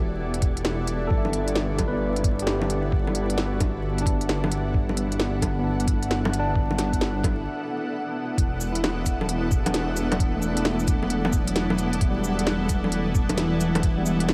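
A barky tine electric piano with 12-bit sampler grit and dub echo opens over a blurred granular cloud pad and a menacing, saturated detuned saw bass, all three pumping against the muffled, thumpy kick that enters at 0.4 seconds, while an overdriven organic kit of bongos, cabasa, smooth hats and a woody snare shuffles at a swung 132 BPM through Em11 and Gmaj7 chords, with a break at 7.5 seconds before a return to Em11 in this melancholic, wistful future garage excerpt dusted with vinyl crackle.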